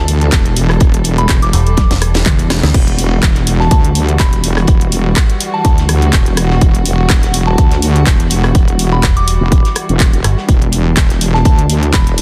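A dry, dense and heavily limited bass house excerpt at 124 BPM in E minor, bouncy and swaggering, with a 16th-note swing over an Emadd9 chord, built on an up-front punchy electronic kick, a wobbling, saturated sawtooth bass and a house kit with a cracking snare, crash, claps, rim clicks and toms, while the bass and the dark, sul tasto chamber strings both pump with sidechain compression. A muffled, gritty acoustic kit sits very quiet underneath, while a soft, pure synth bell with chorus and delay floats in the background from 1.2 s. A metallic FM bass with overdrive punches in at 1.5 s and again at 9.0 s, the first time alongside a drum fill at 1.8 s.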